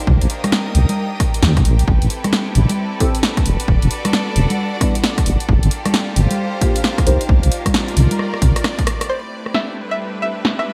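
Moody and late-night, this short excerpt from a longer UK garage track rides a swung two-step groove at 133 BPM in A minor, moving through minor-seventh chords from Cm7 to Am7, Em7 and Gm7. A deep, soft wobble bass with chorus sits up front, dark and compressed, alongside a punchy, tape-warm electronic kick and a layered house kit of congas, hi-hat, rim click and snare, whose filtered hats and snare carry gated reverb before a drum fill at 8.2 seconds. Behind them, a bowed violin section holds sustained chords while a biting symphonic string section adds texture, both distant and pumping against the sidechain. A mellow, wave-folded chord stab treated with chorus, phaser and delay enters at 3.0 seconds, and at 9.1 seconds a twangy, string-like resonator pluck with a filter sweep takes the melody in a new section. Light digital reverb, a bright 1980s-style sheen and a layer of vinyl crackle frame the whole mix.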